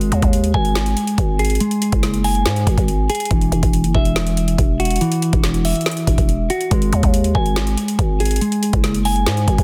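A dense, heavily limited and dry modern master frames this dark, menacing half-time trap excerpt, where a clean, compressed electric guitar plays fingered arpeggios through delay over a growling, buzzy, saturated 808-style bass and an up-front electronic trap kit of knocking kick, woody snare and metallic hi-hats, all three parts running together from 0.0 to 9.6 seconds.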